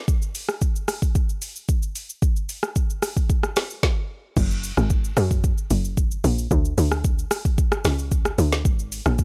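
A tight, punchy log drum bass drops in at 4.4 s, its FM tone carrying a noisy edge with a fast attack and a decaying tail as it sits up front between F#1 and F#2. Alongside it, this relaxed, warm amapiano excerpt at 112 BPM rides on an electronic afro-pop kit that plays from the start, with a deep kick, woody snare, metallic hi-hats, rim clicks, shaker and crash cymbal. The sound is dry and gritty, with little reverb and both parts close and present.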